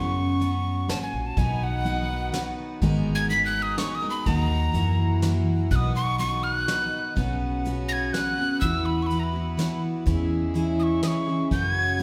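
Acoustic folk in a gentle, pastoral 3/4 at 124 BPM in B major, this short passage is led by a breathy wooden whistle with vibrato and a chiffy, crisp attack, close-miked and up front as it carries the melody throughout, soloing until 7.2 seconds. Beneath it, a bright, full-bodied picked steel-string guitar and a woody, thumpy pizzicato upright bass on gut strings play throughout, soft brushes on kick, snare and hi-hat enter at 0.4 seconds, and a reedy, breathing pedal harmonium adds sustained chords from 1.4 seconds. The harmony moves from F#sus4 through B, G#madd9 and F#7 before shifting to airier Bsus2, Esus2 and C#m/E, all bathed in the wet reverb of a recital hall.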